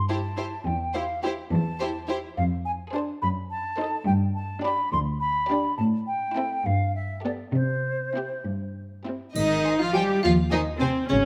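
This playful, whimsical film cue in 6/8 at 70 BPM in C major opens with a hollow, mellow concert flute and an up-front studio cello section. A close violin melody with vibrato, a distant second violin line and a smooth-topped viola accompaniment join them under light reverb, and the harmony passes through diminished and seventh chords before returning to C, after which the flute drops out at 8.4 seconds. At 9.4 seconds the music shifts to Ab as a bright, woody xylophone takes the melody in the background, an expressive double bass section joins the low end and a soft triangle chimes, giving this brief excerpt a mischievous, magical turn.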